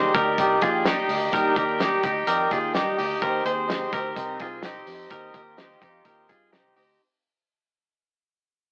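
Clean, twangy electric guitar arpeggios ring up front from the opening moment of this breezy, youthful slice of jangly indie pop, joined by a shimmering, octave-doubled twelve-string acoustic guitar, a buzzy vintage combo organ and a round, foam-muted fingered bass. A cloth-damped drum kit with a fat snare and tight kick comes in at 0.1 s, its dry, thuddy sound keeping the straight 4/4 pulse at 127 BPM. At 0.2 s a swirling, detuned sawtooth pad slides in behind the guitars, its slow-attack chords warbling under phaser and chorus. The harmony moves from Bb to Cm at 3.2 s while the whole passage fades out, and the transistor combo organ slips in a short fill near the end. A moderate stone-room reverb, tube saturation and an AM-radio tone give it the rough, lo-fi feel of a rehearsal-room take, cut from a longer piece.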